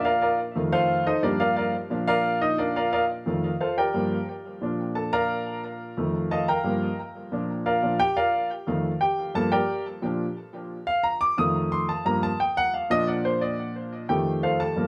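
Set in a moderate studio ambience heard from further back in the room, this festive, sunny Latin excerpt at 177 BPM in Bb major features a clear, present solo grand piano with tape echo, spanning F2 to Eb6 as it cycles through a Bb, F7 and Gm7 progression from 0.0 to 14.9 seconds.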